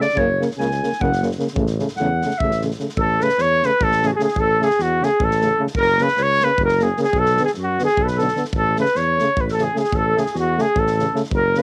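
Virtuosic and festive, this Balkan brass band excerpt runs at 302 BPM in 7/8 in A major. It opens with a distant, roomy clarinet solo over euphonium and trombone accompaniment and an airy acoustic drum kit with a punchy kick and a medium-tuned snare, while a mellow tuba bass enters at 0.2 seconds. At 3.0 seconds a dark trumpet with light vibrato takes the melody up front, the clarinet plays a background second line, and the chords move among F#, A and Bm, all on a home cassette recording with light reverb and a tape tint on every part but the tuba, set off by the euphonium's soft attack and the close-miked trombone.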